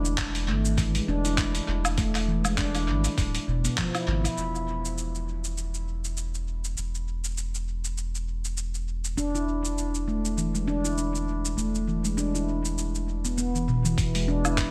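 A ringing, meditative handpan sits up front, playing mellow arpeggios between B2 and E4 through a dub echo, first from 0.5 to 4.4 seconds and again from 9.2 seconds onward. This hypnotic, earthy organic downtempo fragment, cut from a longer piece, moves at 100 BPM in 4/4 with a 57% swing on the sixteenths. Beneath it, a round, deep sine sub bass holds sustained notes between D1 and G#1 with a sidechain pumping effect. A dusty, gritty, compressed sampler-style soul kit of handclaps, hi-hat, shaker and woodblock runs throughout, overdriven and set in studio reverb and tape echo. A thumpy, overdriven electronic kick drum plays at the opening and returns briefly near the close. The mix is echo-heavy, with light reverb and a digital ambience, and the harmony opens on A5 over E before the chords drop away.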